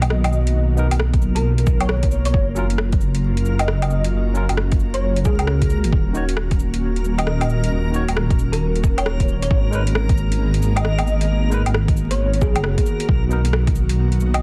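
A dark, detuned saw bass rumbles up front through this rainy, nocturnal future garage excerpt at 134 BPM in Eb minor, its tube-saturated tone pumping against an overdriven electronic kick that enters at 1.1 seconds to join a swung deep house kit of cabasa, metallic hats, rim click and woodblock already playing in a small room. Above, a round, tine-like synth pluck carries the melody through chorus and tape echo, while an ethereal, airy pad holds sustained chords from Bmaj7 through Gbmaj7, Ebm7 and Abmadd9, and a barky tine electric piano with analog delay accompanies from 0.8 seconds. A faint reversed, granular texture glows behind it all, and the dense, heavily limited master is dusted with vinyl crackle.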